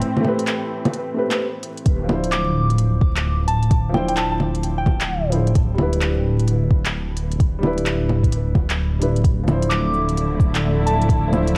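This nocturnal, melancholic future garage excerpt at 130 BPM in D dorian opens on a brief break, where a dark, woody upright piano with audible action noise and tape echo sits over veiled, con sordino strings and an up-front kit of bongos, cabasa, handclaps and crisp hi-hats carrying 12-bit sampler grit, wrapped in vinyl crackle. At 1.9 seconds the strings fall away as a soft electronic kick and a deep, rumbling detuned saw bass on D1 arrive, with the bass and piano pumping against the sidechain, as the strings also do whenever they play. A pure FM synth bell with chorus and tape echo carries the melody from 2.3 to 5.2 seconds and again from 9.7 seconds. The strings return at 9.2 seconds, framed by swung sixteenths and a light digital ambience.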